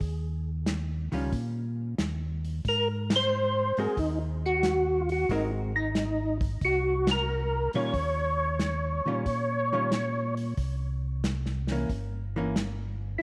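Soul jazz organ trio excerpt at 91 BPM in a swung 4/4, bluesy and soulful in Eb mixolydian, where a mellow, round tonewheel organ carries the bass line with chorus vibrato and slow rotary speaker from the start alongside a warm soul drum kit with punchy kick, medium-tuned snare, hi-hat and dark ride cymbal, a clean, compressed hollow-body electric guitar accompanies from 1.1 seconds, and a percussive organ melody with third harmonic percussion enters up front at 2.7 seconds over chords moving from Eb7 through Ab9 and Eb9 to C7b9, with band accents near 3.0 and 6.9 seconds, all set in a moderate echo chamber reverb.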